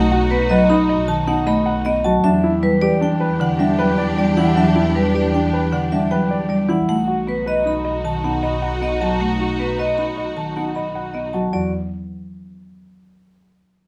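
In a straight 6/4 pulse, this urgent, hypnotic stretch of minimalist pattern music, cut from a longer piece, sets a ringing, metallic vibraphone melody played with hard mallets and a slow motor vibrato over a dry, buzzing marimba accompaniment with a woody, percussive tone. A grand piano adds short-sustained arpeggios, while a distant, lush string section holds bowed chords until 11.3 seconds and a clear, focused double bass section anchors the low end. The harmony moves from B to Em7 and back, settling on Esus2 at 11.5 seconds, all within a light reverb.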